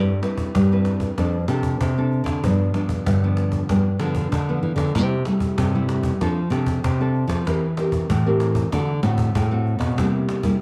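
A fingerpicked nylon-string guitar carries the bass line up front, warm and classical in tone with audible finger squeak, in this lively, sunny fragment of samba and choro cut from a longer piece. A second, full-bodied fingerpicked nylon-string guitar plays the accompaniment, also close and with a deep classical character and its own finger squeak, and carries a cassette-tape coloring. Behind them, a snappy cajon with snares, struck with hard hands, sits distant in a large room and shares that tape grain. Over a straight 4/4 feel, the harmony moves through Cmaj7/G, F6 and G7, then C6, F6, C7/E and D7 before reaching C7 at 10.0 seconds. Light studio reverb surrounds this home recording on cassette.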